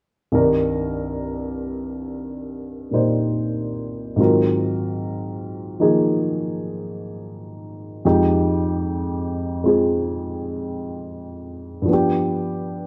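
Heard in a moderate large-studio reverb as if played live in one room, this melancholic, intimate jazz excerpt cut from a longer piece features a warm, natural baby grand piano sitting up front with audible action noise, swinging slowly through accompanying chords from Cm7 through Ab13 and Fm7 to G7 between 0.3 and 12.9 seconds.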